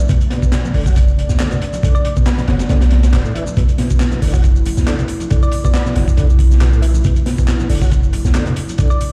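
Vinyl crackle and the boom of a big sound system in a bare room frame this gritty, swaggering breakbeat fragment at 138 BPM in B minor, resting on a single Bm7 chord with a light 16th-note swing. A saturated, up-front acoustic breakbeat kit with a tight kick and a deep, boomy 808-style bass drive it, while a crisp-hatted garage kit adds handclaps and shaker, background congas ring, and a dark, detuned analog pad pumps alongside an overdriven tonewheel organ riff spun through fast rotary speaker, chorus vibrato and dub echo. A round, tine-like thumb-piano synth pluck on D5 appears briefly at 1.9, 5.4 and 8.9 seconds, colored with AM radio tone and dub echo.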